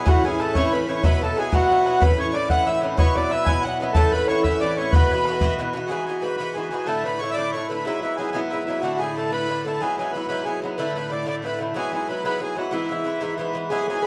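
A rollicking 6/8 jig in Celtic folk style opens this cheerful fragment, with a reedy, full accordion carrying the melody close and dry up front over the metallic, double-strung picking of an Irish bouzouki. A very quiet, airy wooden flute with vibrato and a soft attack adds a second line, while an open, boomy bodhran drives the first section until 5.8 seconds. A ringing, fingerpicked concert harp sits in the background from 2.0 to 7.0 seconds, and harp and flute both return briefly at 13.7 seconds as the chords shift between A, Esus2, Eadd9 and Dsus2 in a studio reverb heard from further back in the room.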